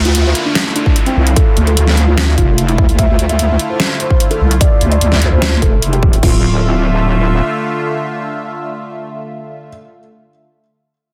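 A detuned, square-and-sine wobble bass sits up front from the start, heavy with overdrive and chorus and carrying a filter sweep through to 6.2 seconds, in this aggressive half-time dubstep excerpt at 148 BPM in D minor, opening on a Dmadd9 chord. A downlifter falls away over the first 3 seconds while an overdriven drum kit with a deep snare, hi-hat and crash, re-recorded in a small room, plays from the opening and is joined at 0.9 seconds by a punchy, tape-tinged electronic kick. Beneath them a lush, bright supersaw pad pumps with sidechain and phaser, and a soft felt-muted upright piano with audible action noise traces a dark, intimate melody through digital delay, both carrying on after the drums stop at 6.3 seconds and into a closing section, all in a dense, heavily limited modern mix with light reverb.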